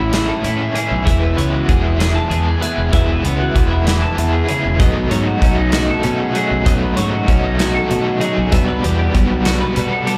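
A playful, bright math rock and midwest emo excerpt at 64 BPM in 6/8 opens on two clean, compressed twelve-string electric guitars over Amaj7, E6, B9 and Gmaj9/B chords: one carries the accompaniment through lush chorus, while the other sits in the background with twangy arpeggios, subtle chorus and tape echo. A dark, double-tracked overdriven guitar riff pulses with tremolo beside a round, fuzzed fingered bass placed up front, and from 0.1 s a punchy acoustic drum kit adds hi-hat, kick and a medium-tuned snare. The guitars carry slapback echo, and the whole performance comes across as a live club gig heard through the venue's PA, with small room ambience and club reverb.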